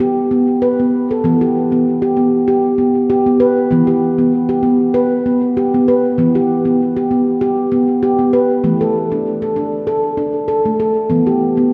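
A solo handpan carries this hypnotic, meditative world piece from 0.0 to 11.7 seconds, its nitrided steel tones ringing under the fingertips across a range from E3 to B4. The instrument sits up front with a boxy small-room character, wrapped in a diffuse ambient delay, while a deep church reverb with a long tail lends the dark production a sense of space. Set in E minor pentatonic at 97 BPM in 4/4, the playing has a gentle lilt from a light swing on the sixteenths. The harmony rests on E minor, shifts to D5 over E at 8.6 seconds, and settles back on E minor near the end of this short cut from a longer piece.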